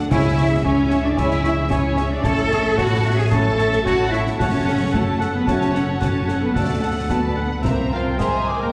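Opening on lush bowed strings, this determined, adventurous excerpt of a heroic cinematic film score at 112 BPM in C# phrygian sets a distant violin melody over a very quiet, woody second violin line, background violas and a bowed double bass section, joined almost at once by an up-front, close cello section, a pure silver flute and a present cor anglais adding lines, dark distant French horns holding chords, clear trumpet stabs, dry concert snare, dark clash cymbals and bass drum, and brief timpani from 0.1 to 0.9 s, all of it moving through C#m, A, F#m, D and C7 in a wet scoring-stage reverb heard from further back.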